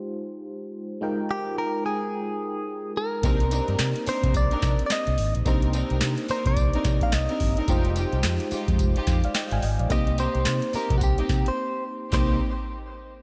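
Slick and punchy, this new jack swing R&B excerpt in C minor moves at 108 BPM with a swung sixteenth feel, opening on a warbling FM electric piano with tremolo before a bright, clean, direct-recorded electric guitar takes the melody at 1.3 seconds. At 3.2 seconds a booming analog drum machine arrives up front with a deep kick, crisp snare, handclaps, metallic hats and tambourine, joined by a round, foam-muted fingered bass and dark bowed string stabs, with the strings and guitar trailing a diffuse ambient delay. The mix is dreamy and soaked in hall reverb, with a brief break at 11.6 seconds as the chords settle from Fm9 and Cm9 onto Cm7.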